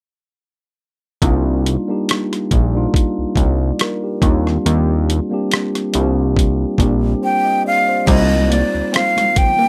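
A breathy, straight-toned jazz flute with a soft attack and lifted highs carries the expressive melody from 7.2 seconds, sitting up front in this introspective, late-night excerpt of neo-soul R&B in C minor at 70 BPM, with a gentle sixteenth-note swing. Beneath it, a mellow tine electric piano, heard clean through its built-in speakers, opens on a Cm9 chord at 1.2 seconds. Alongside it comes a fat, nasal analog bass whose detuned sawtooth tone is saturated and ring-modulated, with a filter pluck and fast-attack, decaying notes. A gritty, pitched-down boom bap kit with a thumpy kick, rim click, hi-hat and crash cymbal has a compressed, sampler-style character. At 8.1 seconds a second section brings in an electric guitar through a small old amp, slightly broken-up and picked in the background, plus very quiet, distant congas with a bright, damped, high-tuned skin in a large room. The overall sound is dry, with little reverb.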